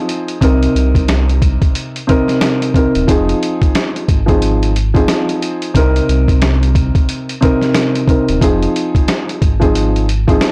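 A blown-out, overdriven recording with light reverb carries this moody, reflective boom-bap hip-hop excerpt in F minor at 90 BPM, swung on the sixteenths. A dark, woody upright piano sits up front, filtered at both ends and mellow in tone, moving between Cm7 and Fm7, while a pitched-down, muffled sampler-style drum kit, compressed and re-recorded in a large room, supplies a thumpy kick, medium-tuned snare, rim click and hi-hat. From 0.4 seconds a deep sine sub bass with an octave adds a full, sustained low end, thickened by tube saturation.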